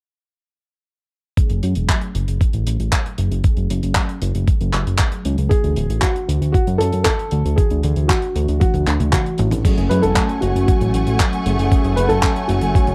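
Danceable and melodramatic, this italo disco excerpt opens with a gritty, overdriven electronic kick and a tight funk drum kit of crash cymbal, handclaps, hi-hat and toms, while a fat, detuned sawtooth analog bass sits up front with a filter sweep, and a mellow synth brass plays chorused, phased stabs in the background. A dark, boxy baby grand piano with audible action noise and tape echo carries the melody from 5.5 seconds, and a drum fill at 8.6 seconds leads to a new section where a lush, distant symphonic string section adds bowed sustained chords with vibrato from 9.6 seconds. The sound is dry and close, in a 1970s studio style.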